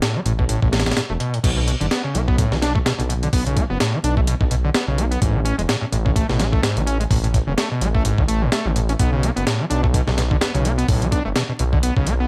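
Vinyl crackle and light reverb frame this funky, energetic breakbeat fragment at 127 BPM, its 16ths swung in 4/4. A gritty, compressed sampler-style drum kit with a thumpy kick, medium-tuned snare, hi-hat and crash sits up front in a small room from the start, joined at 0.3 s by a deep, rumbling detuned saw bass thickened with tube saturation. A screaming acid riff, squelchy and resonant with distortion, subtle chorus and tape echo, drives the track into the drop at 1.4 s.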